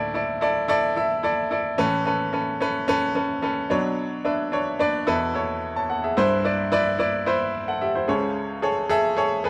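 Pop piano piece, hopeful and anthemic, where a bright grand piano plays alone, brilliant and polished up front with short sustain across a span from low C2 to A5, moving through open suspended and added-note chords before turning to Cmaj7 at 6.2 seconds and Amaj7/C# at 8.1 seconds in a stone room with moderate reverb.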